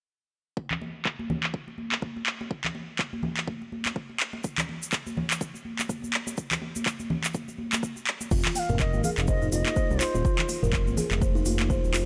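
A buzzing, woody kalimba gives this afro house excerpt its earthy character, entering at 8.3 seconds with soft, ringing arpeggios that pump with the sidechain and trail off through tape echo. From 0.6 seconds, the groove rests on a deep, up-front electronic kick, joined at 0.7 seconds by a produced afro-pop kit with crisp hats, handclaps, toms and a crash cymbal, all laid over a swung sixteenth-note feel. Bright, high-tuned congas played with soft hands sit alongside the kit, and a grainy tube shaker, close and dry, joins at 4.4 seconds. When the chord settles on Fm7, a smooth, nasal synth bass arrives with the kalimba, pumping in the same way, and an airy bamboo bansuri follows shortly after with a distant, vibrato-laced phrase echoed on tape. The whole mix carries a light, small-room ambience that keeps the mood close and warm.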